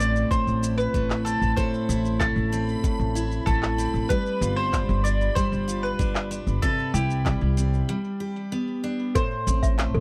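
A picked mandolin carries the melody in this intimate, autumnal folktronica excerpt, its doubled strings roughened by vintage 12-bit sampler grit and tape echo, over bright, full-bodied arpeggios from a jumbo steel-string acoustic guitar that also carries tape echo. A woody pizzicato upright bass on gut strings sits up front, joined by a muffled, pitched-down sampler kick and electronic shaker and handclaps, while a reversed, dreamy granular texture hovers faintly in the background from 0.2 to 7.9 seconds. After a break, a clanky, slightly out-of-tune toy piano enters at 9.2 seconds with a second line, and the whole recording has a dry, close 1970s-style studio sound.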